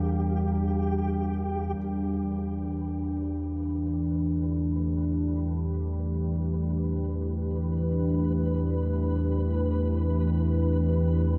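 A deep, rumbling drone sits up front from the first moment, its nasal, detuned tone colored by ring modulation and held low in E minor. This is an unsettling, ominous dark ambient drone in free time, cut from a longer piece. Beside it, a moody pad of detuned sawtooth unison with a sub octave holds sustained chords through chorus, moving from Gm/E to Em at 1.8 seconds. A very quiet, boxy grand piano traces mellow arpeggios in the middle register until 6.0 seconds. A flickering, grainy texture fades in from 1.8 seconds onward. The whole piece sits in a vast, echoing space, with a huge reverb tail that lets every sound hang and blur.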